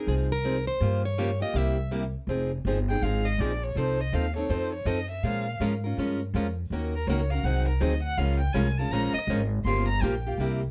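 Virtuosic and swinging, this brief excerpt of acoustic string swing in F minor moves at 163 BPM, opening with a bright, full-bodied plugged-in steel-string guitar melody that lasts only until 1.9 seconds over picked steel-string guitar accompaniment and a woody, thumpy pizzicato upright bass on gut strings, before a bowed violin enters at 2.9 seconds for an expressive solo full of vibrato and portamento, all set in light reverb.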